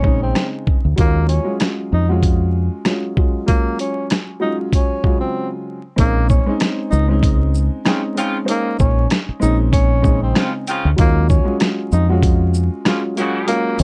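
A breathy tenor saxophone carries the melody through this boom-bap hip-hop excerpt, its soft-attack, scooped notes and vibrato giving a whispered, intimate jazz voice above a reflective yet tough groove in Bb minor at 96 BPM with a light 16th-note swing. Underneath, a dark baby grand piano plays mellow Bbm11 and Ebm11 chords with a boxy, short-sustained tone, its action noise audible and its sound coloured by cassette tape. A deep, round fingered electric bass sits up front alongside a dusty, compressed sampler-style kit of thumpy kick, medium-tuned snare, rim click, hi-hat and shaker. A break arrives between 3.5 and 6.0 seconds, and from 7.9 seconds a vintage horn section adds jazz-style stabs doubled in octaves, trailed by analog delay, while the kick drops out for the final moments from 13.5 seconds. The mix is dry and gritty, with little reverb and a layer of vinyl crackle that lends it a worn, hardware-made character.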